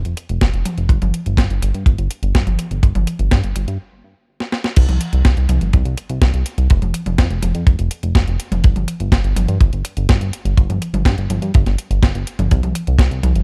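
A dark, small-room mix puts a glossy, nasal chorused synth bass and a tight, dry kick drum up front in this danceable, melodramatic italo disco cut at 124 BPM, its bass lines running from F1 to G2 with tube saturation and a plucky filter over sawtooth and pulse-wave tones. A clean 12-bit drum machine adds an overdriven, sampler-style snare, hi-hat, crash and toms from 0.1 seconds, with the kick joining at 0.4 seconds. After a stop at 3.8 seconds and a drum fill at 4.4 seconds, the groove moves into a new section at 4.8 seconds and runs until the clip is cut off.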